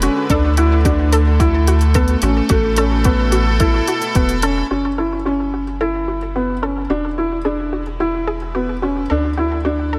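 Piano and strings electronica in F# minor at 109 BPM, moving and melancholic, cut from a longer piece, where a felt-muted upright piano with audible action noise plays an intimate riff with delay over a round, nasal analog bass, a chorused and delayed analog pluck arpeggiating in the background, and a reedy, gut-string chamber section holding sustained chords that pump with the bass and pluck and fade in from 4.7 seconds as the harmony moves from Dsus2 and Asus2 to F#m7 and E7, while a deep electronic kick and smooth hi-hats drive the first half before dropping out by 4.5 seconds, all set in a small, lightly reverberant room.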